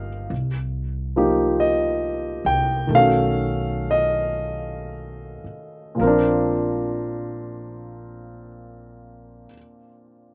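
Swung eighths in a slow 4/4 at 35-50 BPM, easing down through the first 6.0 seconds, carry this romantic, late-night jazz ballad fragment in Bb major, where an intimate, up-front baby grand piano with audible action noise moves from Cm7 to B7 before settling on Bb at 6.0 seconds, over a woody pizzicato upright bass with steel strings that drops away at 9.4 seconds, the pair heard dry and close in an outdoor setting free of room sound.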